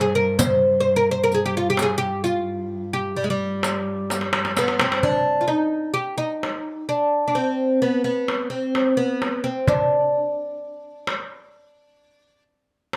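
A woody, deep oud opens this melancholic Arabic maqam ensemble piece, carrying a longing plectrum-plucked melody in G maqam kurd, set against a smooth, nasal bowed cello drone on G2 that sways with vibrato. Almost at once the darbuka, with its crisp metal-shell tone and hard-handed strokes, and the riq with its glinting jingles join in, setting a straight 10/8 pulse at 129 BPM in eighths. A darbuka fill arrives at 4.1 seconds, and the first passage gives way to a second one as the riq falls away and the cello drone ends at 5.1 seconds. From there the fretless, double-strung oud and the darbuka continue as a duo, both up front, with the drum carrying a distant, large-room character. Light reverb gives the ensemble a gentle sense of space, and the recording is cut from a longer piece.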